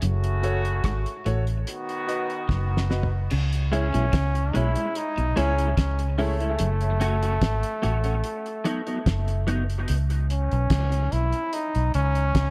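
A brilliant solo trombone, up front with light vibrato and dub echo, carries the pop-style melody from 3.7 seconds to the end of this spacious, hypnotic dub reggae excerpt. Before it, a tight, vintage trombone section opens with a soft-attacked second line soaked in echo, while a very quiet, twangy electric guitar at the edge of break-up picks a riff and a clear concert grand piano sits in the background with filtered, echoing stabs, both carrying on for a few seconds after the melody enters. A foam-muted, round fingered bass and a cloth-damped, thuddy drum kit with a fat snare, tight kick and dark cymbals anchor the groove up front, and the drums play a fill to close the opening break. Once the melody arrives, a clean, compressed electric guitar adds filtered accompaniment with ensemble chorus and dub echo. Chords move through F#m, B and C#m before settling on Bsus2, all in an echo-heavy mix with light studio reverb.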